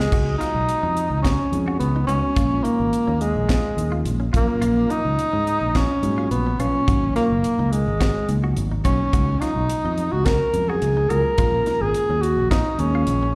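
A lightly swung sixteenth-note groove at 106 BPM drives this slick, funky stretch of electric jazz fusion, cut from a longer piece, with a tight, dry funk kit of high-tuned snare, tight kick, hi-hat and crash sitting up front beside a warm, amped fingered electric bass. Over it a dark, breathy tenor saxophone takes the solo in an intimate subtone, with vibrato, scooped notes and a soft attack, colored by slapback and tape echo. Further back, a mellow tine electric piano supplies accompaniment while a clean, twangy, compressed guitar with chorus and echo adds stabs over chords such as Db9sus4, Bbm7 and Abm9, all heard through a venue PA with a light recital-hall reverb.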